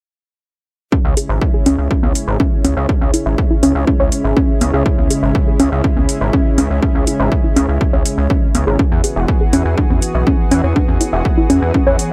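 Melodic techno at 122 BPM in C# minor, dark and dramatic in mood, heard as a short cut from a longer piece with a straight 4/4 feel. An overdriven, heavy electronic kick sits up front from 0.9 seconds, joined by metallic, tape-tinged hi-hats that pump with sidechain compression. A gritty, aggressive synth bass with a saturated, wave-folded edge and a resonant filter pluck holds the low end from E1 to E2, its sidechain pumping giving it a breathing motion. Above it, a soft, round pluck plays arpeggios through chorus and tape echo, with a filter sweep running across its sound the whole way, while a lush, warbling unison pad sustains chords with a slow attack and long release. The harmony rests on C#m before shifting to E at 8.8 seconds, all set in light reverb and digital ambience.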